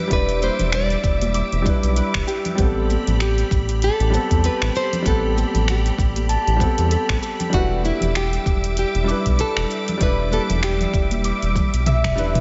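A big, arena-like room with moderate reverb and a dulled top end frames this smooth, wistful sunset chillout excerpt in A minor, moving at 97 BPM with a lightly swung 16th-note feel over Em7, Am9 and back to Em7. A fingerpicked nylon-string guitar carries the melody with full body and audible finger squeak, dressed in delay and slapback echo until 11.8 seconds. Around it, a boxy grand piano with tape echo, a silky, chorused string machine holding mellow sustained chords, and a bright, thumb-plucked Celtic harp ringing arpeggios through gritty sampler texture fill out the harmony, while a round, dark analog bass sits up front beside a deep electronic kick, a deep house kit of finger snaps, metallic hi-hats, shaker and toms, and soft-handed congas in the background, with a drum fill closing from 11.6 seconds.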